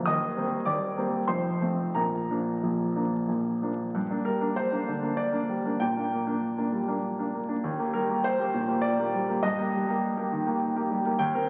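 Heard through the crackle of a very old 78 rpm record, this short passage from a longer piece unfolds in the wet reverb of a recital hall. It is a romantic character piece for solo piano in triple metre, played with a free, rubato feel and a hopeful, passionate mood. The baby grand sounds clear and present, placed up front, and ranges from deep bass up into the high treble. The opening phrase moves from Cm7/Eb through F to a settled Bb. At 4.0 seconds the music turns toward the relative minor, beginning on Gm. That second section then passes through a rootless Eb chord and closes on Eb/G, with the hall's reverb lingering around the instrument.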